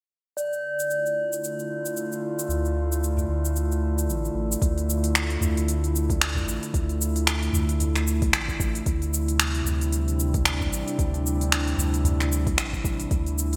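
A lush hall reverb and bright, 1980s-style digital sheen frame this earthy, mystical stretch of organic downtempo, cut from a longer piece and set in a gently swung 4/4. A bronze singing bowl opens with a ringing, metallic tone struck by a wooden striker, its slow beating lending a meditative air, while an up-front organic electronic kit of cabasa, finger snaps and smooth hi-hat enters alongside it, overdriven and treated with gated reverb. Just after, an airy, breathy pad drifts in with sustained chords, its detuned layers and noise edge softened by chorus and a slow attack and pumping beneath a sidechain. A deep, round sub bass arrives at 2.5 seconds, and a small, very quiet udu adds acoustic colour from a small room. When the bowl falls away at 4.6 seconds, a soft, overdriven electronic kick joins the kit, and the harmony shifts from D minor to C at 8.9 seconds.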